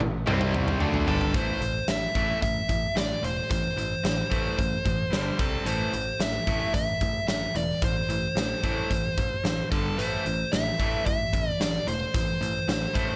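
Menacing and driving, this hard rock excerpt moves at 111 BPM in 4/4 with a straight feel in A minor, cut from a longer piece. A huge arena drum kit sits up front with a natural, big-room sound, a boomy kick and a medium-tuned snare, opening with a fill over the first 1.3 seconds before the main section begins. Two bright, overdriven stack guitars play the riff from the start, one double-tracked and heard only until 1.3 seconds, joined by a dark, hollow-bodied semi-hollow guitar, all picked and set back in the mix. A growly, bright electric bass played with a pick and recorded direct holds the low end. From 1.1 seconds a dark, smooth, overdriven lead guitar carries the melody up front, and the harmony cycles through Am, G5 and C5 under light reverb and a small-room ambience.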